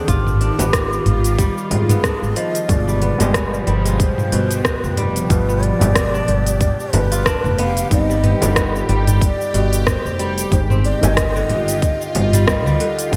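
Bright, 1980s-style digital production sits in a lush hall reverb, giving this hypnotic, earthy stretch of organic downtempo a spacious sheen as it is lifted from a longer piece. A breathy low ney carries the melody with reedy, end-blown tone, vibrato, soft attacks and a touch of delay. Beneath it, a tense, string-like drone holds sustained chords with slow attack, phaser, vibrato and sidechain pumping, while a fingerpicked kora rings out crisp arpeggios through its own delay. An up-front, woody pizzicato upright bass thumps along with sidechain pumping, joined by a tight electronic kick and a produced kit of crisp hi-hats, cabasa, rim clicks and toms in gated reverb, with a soft-handed frame drum in the background from 0.6 seconds. At 2.7 seconds a felt-muted upright piano enters quietly behind the mix, mellow and intimate with audible action noise, chorus and delay, as the harmony moves from Abmaj7 through G7b9, Cmadd9/G and Fm9/G over a lightly swung 4/4 groove.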